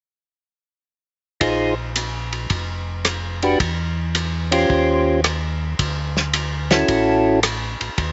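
A swinging 4/4 groove at 110 BPM, with the eighth notes swung, drives this bluesy soul jazz organ trio fragment, cut from a longer piece. From 1.4 seconds a drum kit sets the pulse with hi-hat, kick, ride cymbal, rim click and snare, sounding acoustic and mid-forward with dark cymbals, a medium-tuned snare and a tight kick placed up front. A mellow, round tonewheel organ carries the bass line from F1 to E2 through a slow rotary speaker, its key click audible under the groove. Above it, a second tonewheel organ with third-harmonic percussion plays the melody between Db4 and C5, clean and up front with the same slow rotary sway, dropping out at 7.4 seconds while bass and drums carry on to 8.1 seconds. The harmony moves from Bb9sus4 through Em and Eb13 to Dmaj9, and the dry outdoor sound, with a rolled-off top, keeps the trio intimate.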